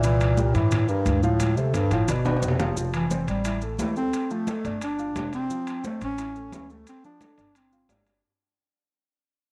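A mellow, vibrato-laden bass clarinet carries the melody up front from the first second, over a dark baby grand piano with long sustain, woody pizzicato upright bass, high-tuned congas played with soft hands, distant metal-shelled timbales and close, grainy maracas. This lively, sunny slice of Afro-Cuban jazz moves at 176 BPM in a straight 4/4, with chords such as C9, Dm7 and G7 framing a drum fill from 1.4 to 2.8 seconds. From 2.8 seconds the music fades out in a small-room ambience, with the bass clarinet ending at 7.9 seconds.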